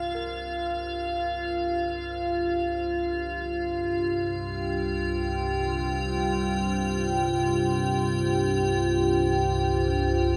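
Soaked in a huge, wet reverb with an RT60 of 8.3 s, the recording has a shadowy, cavernous production, and this desolate dark ambient drone piece drifts in free time, tuned to A4 = 436 Hz. At the bottom, an analog drone of sawtooth and pulse waves with pulse-width modulation holds C2 to G2 through chorus, evolving gradually as it fades in across the full 10.4 seconds. Above it, a deep, moody analog pad of detuned square, saw and triangle waves with a sub octave sustains chords from D4 to C5 over a Csus2 harmony, also fading in, coloured by chorus, phaser and shimmer reverb. The most up-front part is an icy glass pad, crystalline and airy, stacking sine unison with a noise layer between F4 and G5, its chorus, built-in reverb and shimmer giving it a bright glint. Barely audible, an eerie FM bell with an inharmonic, detuned tone traces fast-attack, decaying arpeggios from D4 to Bb4, in a clip cut from a longer piece.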